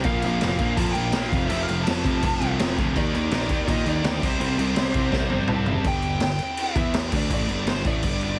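A raw garage drum kit sits up front at 165 BPM in straight 4/4, its high-tuned snare and boomy kick gritty and saturated in a small room, while an overdriven picked bass with a direct tone, a sludgy guitar in the background and a bright, compressed distorted guitar open this rebellious, upbeat punk rock excerpt. A dark, bluesy overdriven lead guitar carries the melody over chords moving from Bb5 through F, Eb5 and C5, until a drum fill at 5.1 seconds leads into a new section at 5.8 seconds, where the distorted electric guitar stops and the harmony shifts between G5 and E5. The mix has a heavily compressed radio sound with light reverb.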